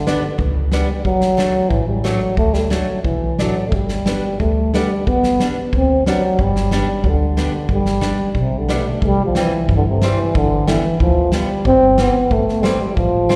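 Jolly and festive, this fragment of rubato alpine folk dance-band music in 2/4 sets a classical-style euphonium up front on the melody, dressed in plate reverb and slapback echo, over a thumpy gut-string pizzicato upright bass, a woody, boxy picked archtop guitar on old strings carrying the same plate and slapback, and a loose indie drum kit of tight kick and medium-tuned snare with a rolled-off top, the whole band heard as a live gig through the venue's PA in a moderate club room.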